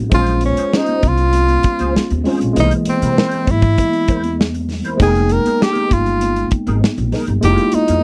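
A straight 4/4 groove at 98 BPM, set by a modern studio drum kit with a tight kick, a medium-tuned snare and hi-hat sitting up front, carries this short cut from a longer piece of lush 1970s-style soul in F minor. The mood is silky and smooth, moving through Bbm9, C7alt and Fm11 across about 8 seconds. A breathy tenor saxophone takes the solo melody, close-miked and up front, with a clear jazz tone and vibrato. Beneath it, a pizzicato upright bass with steel strings gives a woody low end, while a worn, slightly out-of-tune tine electric piano comps with a barky bite through a combo amp. A dark, fingered electric guitar plays a riff in the background, colored by wah and ensemble chorus, and very quiet, high-tuned congas struck with hard hands sound distant, as if in a large room. The overall sound is a dry, close 1970s-style studio recording with little reverb.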